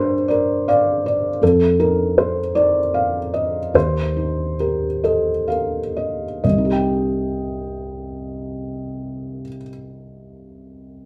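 Longing and fragile, this classical fragment in a rubato 6/8 is carried by a felt-muted upright piano heard from 0.0 to 11.1 s, its soft, dark, thick-felt tone sitting intimate and up front as it accompanies through chords moving from Gm7 to F5 and Ebadd9. The music slows from 0.3 to 6.4 s, where a new passage settles on Cm. The piano's mellow, vintage sound is wrapped in a wet studio reverb that gives the feel of a performance captured live in one room.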